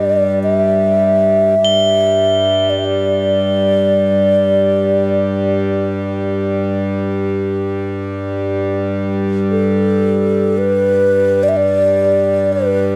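Recorded to cassette tape in a wet, reverberant studio room, this spacious, peaceful excerpt of world meditation music drifts in free time around G major pentatonic, tuned to A4 = 439 Hz. A reedy, dark pedal harmonium sits up front with a drone and plate reverb, beneath a breathy, hollow alto flute melody played with a straight tone and crisp attack, miked close and coloured by plate reverb and tape echo. From 1.6 to 10.0 seconds, high crotales add a shimmering, bell-like ring as background texture.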